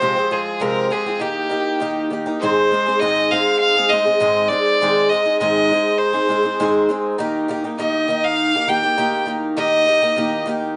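Rock at 100 BPM in a straight 4/4, wistful and reflective, this short excerpt pairs a rich, smooth bowed fiddle melody with light vibrato and slapback echo, up front until 10.4 seconds, with a picked twelve-string acoustic guitar whose woody, boxy, shimmering octave-doubled tone and old strings carry the accompaniment through Fmadd9, Eb and Ab chords in light reverb, moving into a new section at 2.4 seconds.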